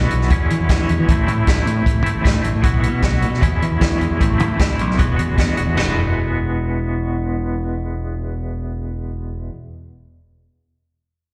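A twangy electric guitar leads this upbeat, jangly indie rock excerpt, playing a bright, clean, picked riff with compression, tremolo and slapback echo from the first moment to 9.5 seconds. Beneath it, a growling fingered electric bass adds overdriven grit, its direct-and-amped tone sitting up front alongside the guitar. A vintage acoustic drum kit drives the straight 4/4 pulse at 154 BPM with a punchy kick, medium-tuned snare, hi-hat, toms and dark china cymbal, then stops at 5.9 seconds, leaving guitar and bass to carry the closing passage. The harmony in E major moves through E6, Am, Bsus4 and back, landing on Eadd9. The sound is that of a live gig heard through the venue's PA, with the parts themselves fairly dry but set in a recital-hall reverb.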